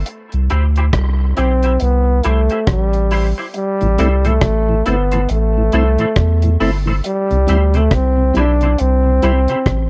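Serious and hypnotic, this roots reggae excerpt moves at 69 BPM with a swung sixteenth feel, carried by a deep, round dub sub bass and a dry, dark drum kit of hi-hat, kick and rim click, both up front. A clear trombone takes the melody from 1.4 seconds, while a bright, clean semi-hollow electric guitar with ensemble chorus plays accompaniment over chords moving from C to Am and back. A mellow tonewheel organ with key click and slow rotary speaker joins in the background at 3.8 seconds, all heard through a nearly reverb-free cassette tape sound.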